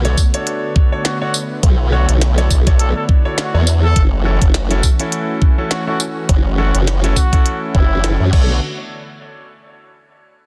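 Swung sixteenths drive this playful, swaggering glitch hop drop, cut from a longer piece, where a knocking, up-front electronic kick and a glitchy kit of clicky hats, a tiny soft-clipped snare, rim click, tambourine and crash push beneath a detuned, formant-swept wobble bass, while a smooth sawtooth analog pad and clear grand piano stabs pump with 12-bit sampler grit, the piano trailing dub echo, and a mellow, distant trumpet with light vibrato and its own dub echo enters at 1.0 s over Bm7 and F#m7 chords in a dry, dense, heavily limited mix.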